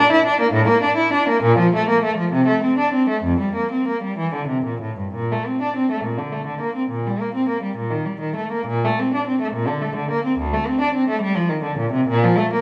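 A 6/8 pulse at 58-72 BPM in dotted quarters, shaped with free rubato, drives this dance-like, radiant classical baroque-style suite movement for unaccompanied cello, whose warm, expressive bowed tone with vibrato and portamento sits up front and spans D2 to E4 as the music moves from F major into Bb major at 5.2 s, all within a moderate recital hall reverb in this short passage cut from a longer piece.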